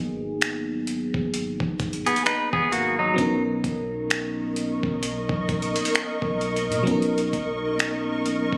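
This contemporary R&B excerpt moves at a slow 65 BPM in 4/4 in B major, with a swung sixteenth-note feel and a romantic, smooth mood. A glassy FM electric piano with a bell-like attack and a vintage, warbling chorus sits up front from the start, moving from G#m9 to Bmaj9 over a deep, round 808-style bass. At 0.4 seconds a dusty, sampler-style kit enters with finger snaps, hi-hat and a thumpy kick, sounding gritty, compressed and overdriven, as if re-recorded in a small room. Between 2.1 and 3.4 seconds a clean, twangy electric guitar plays fingered arpeggios through a delay. From 4.5 seconds a cloudy, detuned granular pad swells in with sustained chords in a high register, blurred and evolving in its own built-in reverb. The mix has a light digital ambience and the character of a phone recording in the room, with studio reverb and a tuning a touch flat at A4 = 436 Hz.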